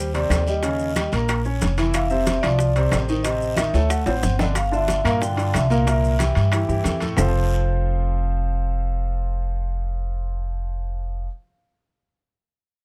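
Afro-Cuban jazz at a lively, danceable 183 BPM in F major, this short cut from a longer piece sets a ringing, metallic vibraphone melody over a clear concert grand with a deep low end and a woody pizzicato upright bass sitting up front. A percussion bed of bright background congas, round low-tuned bongos, band-limited vintage timbales, grainy maracas, dry claves and a raspy guiro drives the groove, with a drum fill from 3.7 to 4.6 seconds, before the percussion drops out around 7.3 seconds to leave vibraphone, piano and bass. The sound is close and detailed with little reverb, and the harmony moves from a rootless Abmaj7 through Eb9, Fmaj7, Am, D7, Gm7 and C7 to settle on F.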